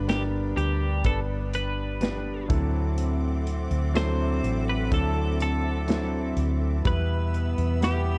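A straight 4/4 pulse from a smooth, dark studio drum kit with tight kick, hi-hat and snare carries this emotional, heartfelt pop ballad, cut from a longer piece, with a round, punchy hollow-body fingered electric bass sitting up front. A bright, twangy twelve-string electric guitar with subtle chorus carries the melody over an intimate concert grand piano full of audible action noise, while a distant, floating cello section plays a second line and a lush, woody string section holds chords. The chords move through G, Dadd9 and Em, and the whole production is dark and warm with little reverb.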